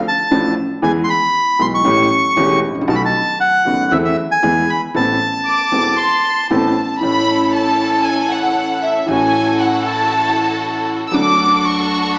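A reedy, dark bandoneon carries the melody from 0.1 s over a boxy grand piano and a woody, growly pizzicato upright bass deep in the background in this sultry, passionate rubato tango excerpt at 117 BPM, before a sul tasto chamber violin section with light vibrato enters at 5.5 s and takes over as the solo voice when the key shifts from A minor to A major at 7.0 s, joined there by focused, clear bowed string stabs, all set in a recital hall reverb with a small speaker sound.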